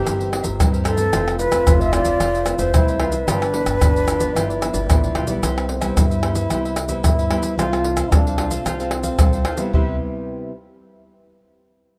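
This joyful, lively samba and choro cut from a longer piece moves at 112 BPM in a straight 4/4, in C major and tuned to A4 = 435 Hz. A breathy wooden flute carries the melody from 0.9 to 4.9 seconds, close-miked with a soft attack, expressive vibrato and a slapback echo. Beneath it, a distant, roomy trombone plays a jazz-style second line with light vibrato and its own slapback echo. The fingerpicked nylon-string guitar adds classical accompaniment, the crisp picked cavaquinho sits in the background, and the pizzicato upright bass with steel strings gives a woody, thumpy low end. Maracas, surdo, pandeiro and tamborim sit up front, with a tight surdo anchoring the groove. The harmony moves through C7/G, Fmaj7 and G7 before shifting to Cmaj7 at 5.4 seconds, all in a rough home demo mix with light small-room reverb.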